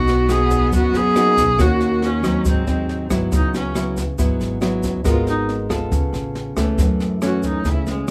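Bossa nova at 138 BPM in C# minor, wistful and intimate and cut from a longer piece, where a smooth bowed viola with vibrato carries the melody up front over fingerpicked classical nylon-string guitar, woody pizzicato upright bass, a brushed drum kit with a high-tuned snare, rim clicks and a boomy kick, and a grainy egg shaker in the background, while a soft sul tasto cello adds a second line until 3.1 seconds before the viola takes a solo from 3.3 seconds, heard in a rough home demo mix with small-room ambience and light reverb.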